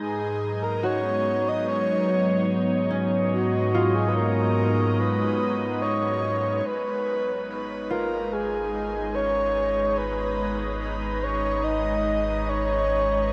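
A breathy, flute-like synth lead carries the melody up front through lush chorus and tape echo in this spacious, reflective ambient excerpt, floating over a morphing, detuned wavetable pad with phaser that is filter-swept and then fades in, a calm organ-like drone, a ringing concert harp playing arpeggios in the background from 0.8 to 11.3 seconds, and a round sub bass that fades in at 6.7 seconds, the whole recording set inside a huge, wet reverb.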